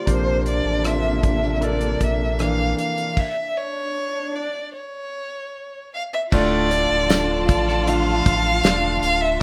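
A rough, reverb-soaked home-demo sound frames this emotional, heartbroken pop ballad fragment at 77 BPM in D minor, where a dark, expressive solo violin with vibrato and portamento sings up front over an intimate concert grand piano with audible action noise, lush background strings bathed in plate reverb, a deep sine-and-triangle sub bass with octave and a damped 70s drum kit with fat snare and tight kick, as an electronic swell sounds during a stop at 3.2 s before a distant symphonic violin section, a very quiet, twangy twelve-string electric guitar playing arpeggios and a faint, jingly tambourine join at 6.3 s.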